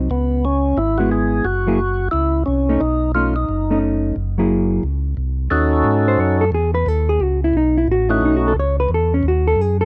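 A hollow-body jazz guitar and a mellow tonewheel organ bass sound together from 0.0 seconds, joined almost at once by a second tonewheel organ carrying the melody in this soulful, swinging soul jazz organ trio excerpt. The tempo is a brisk 177 BPM in 4/4 with a swing on the eighth notes, centred in B mixolydian over chords such as C#m7, B9 and F#9. The bass organ is round and dark with vibrato and key click, while the melody organ is full and percussive with second harmonic percussion, and both turn through a slow rotary speaker. The clean, fingered electric guitar has a shadowy hollow-body tone, and it steps forward into a solo at 5.5 seconds, with the melody organ dropping out at 8.5 seconds. All three parts sit up front in a dry, close, 1970s-style studio sound with little reverb.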